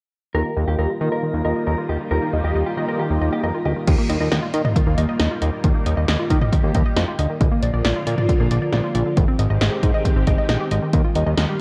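The recording has the worn, warbling character of old cassette tape, with a warbly pitch drift, light reverb and a digital ambience. This nostalgic, upbeat synth-pop passage in Eb major moves at 136 BPM in a straight 4/4, and it is cut from a longer piece. A lush, vintage string machine holds sustained chords throughout, while a bright analog pluck, treated with chorus, tape echo and shimmer reverb, spins arpeggios alongside a fat, detuned analog bass sitting up front. During the opening, under a filter sweep, a dark, brassy synth brass with phaser and vibrato adds accompaniment, and a clean, compressed electric guitar carries a second line through tape echo until about 3.8 seconds. At 3.9 seconds a punchy analog drum machine enters with kick, snare, hi-hat, toms and crash, its tape-tinged small-room sound placed up front. The harmony rests on Ebadd9 before moving through Bb and Abmaj7 and returning to Ebadd9.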